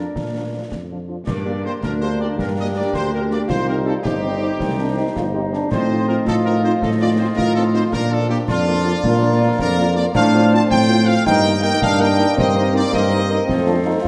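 A festive, rousing military-style march for wind band in 6/8 at 108 BPM in Bb major, cut from a longer piece, opens with a bright, tight trumpet section carrying the melody over a clear solo euphonium with a vintage tone and a warm woodwind section on second lines, smooth-topped French horns with light vibrato softly accompanying, and an up-front, soft-attacked tuba bass; close, dry concert snare, bass drum and dark clash cymbals join at 0.2 seconds, and a very quiet trombone section adds sustained chords from 1.2 seconds, in a wet scoring-stage reverb.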